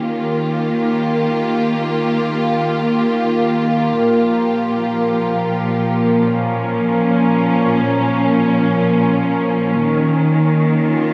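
A bowed studio string section and an analog synth drone fade in together from the start, the strings up front holding rich, smooth sustained chords with light vibrato. Alongside them the detuned sawtooth drone, softer in level, evolves through chorus and phaser, with a slow attack and long release. This serene, spacious ambient piece in free time and Bb dorian moves from Eb to Bbm at 4.0 seconds and settles on Eb5 at 9.8 seconds, all of it suspended in a huge, echoing reverb.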